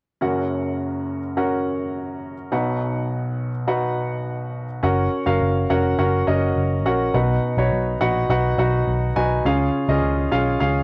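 Hopeful and warm, this pop excerpt at 104 BPM in F# major opens on a clear, up-front baby grand piano with a cassette-tape tint, moving between F# and B before a dark, round, foam-muted electric bass joins at 4.8 seconds and the chords reach C#, all carried by light reverb and the character of a home cassette recording.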